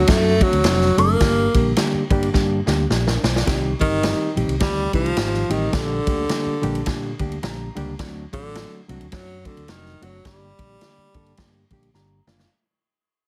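A swung 4/4 groove drives this urgent, passionate slice of uptempo 1960s-style soul, with a breathy, close-miked tenor saxophone carrying the scooped-note jazz melody up front over a reedy, mellow electric piano heard through its built-in speakers, an amped fingered electric bass and a roomy big-band drum kit of punchy kick, snare and ride, the drums adding a fill at 2.3 seconds and the piano one at 7.1 seconds, all set in light reverb and a heavily compressed radio sound as the passage fades out.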